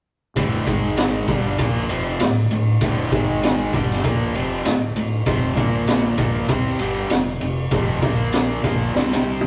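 A rough rehearsal-room recording with tube saturation and moderate booth ambience frames this heavy, menacing hard rock excerpt in D minor at 98 BPM in straight 4/4. A bright, overdriven electric guitar sits up front on the riff alongside a very quiet sludgy distorted guitar, while a round, fuzzy fingered bass stays in the background. The raw garage kit of boomy kick, high-tuned snare, ride and toms sounds gritty and saturated with a rolled-off top, and it plays a fill at 9.0 seconds as the chords move from Dm through F5 and Bb5 to C5.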